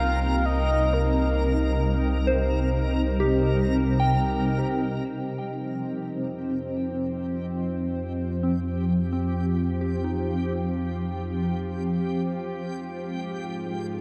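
Drenched in a vast, echoing reverb, this ambient passage cut from a longer piece feels melancholic and reflective. A shimmering, ethereal pad sits up front over a deep, ominous rumbling bass drone, while a breathy, flute-like lead offers a brief melody that ends at 1.9 seconds and a soft, warbling bell plays vintage FM arpeggios that fade out from 5.1 seconds. A reversed, dreamy swelling texture fades in from that point as the chords move from Cm7 to Fsus2, and a tense, string-like bowed drone with vibrato joins in the background at 7.5 seconds before the harmony settles on Absus2.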